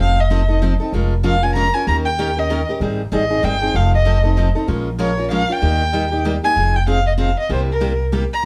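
Acoustic string swing in the jazz manouche style, this short cut from a longer piece moves in a swinging, fiery three-beat lilt. A dark violin carries the melody up front, bowed by a single player with vibrato, a soft attack and expressive portamento gliding between notes, its upper register staying smooth. Beneath it, a picked steel-string acoustic guitar supplies bright accompaniment with a fresh-stringed sparkle, while a pizzicato upright bass with gut strings gives a woody, thumpy foundation until 8.2 seconds. The harmony cycles through seventh chords such as F7, Eb7 and Abmaj7 before shifting to a new passage at 6.6 seconds over Fm7 and C7. Moderate studio reverb places the trio a little further back in the room, lending the close, lively playing some air.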